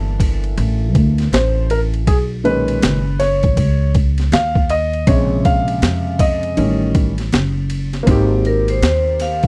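This jazz-hop excerpt moves at 80 BPM in 4/4 with a swung sixteenth-note feel, its mood smooth and warm. A dark grand piano carries the chords and takes the solo spotlight until 8.1 seconds, sounding mellow, worn and intimate, with audible action noise and long sustain through a progression that opens on C13 and passes through Bmaj13, Bbm7 and A7#11. Underneath, a pizzicato upright bass with steel strings gives a woody, acoustic low end, while a boom bap sampler-style kit enters at 0.2 seconds with a thumpy kick, high-tuned snare, hi-hat and ride, pitched down, compressed and gritty with overdrive. At 8.5 seconds a vibraphone played with medium hard mallets arrives to carry the melody over an Abmaj9 chord, its metallic, ringing tone shaded by slow motor vibrato and a boxy small-room sound. The overall production is dry and close, in the manner of a 1970s studio session, with piano, bass and drums all placed up front.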